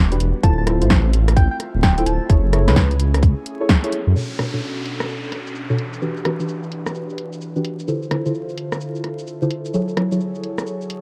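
A dark, detuned sawtooth bass rumbles up front with sidechain pumping through the opening of this moody, bouncy two-step UK garage excerpt at 129 BPM in B minor, joined by a tight, overdriven electronic kick until 3.8 seconds, while a punchy, tape-toned analog drum machine plays swung hi-hat, rim click, shaker and low-passed snare throughout. Deep, warbling chord stabs and an airy, breathy pad move through Dm7, F#m7, Bm7 and Em7, with the pumping pad carrying a filter sweep from 4.2 seconds. Early on, a round, keys-like FM lead with chorus and delay sounds briefly, and a faint downlifter follows, all within a dark production of light digital reverb and vinyl crackle.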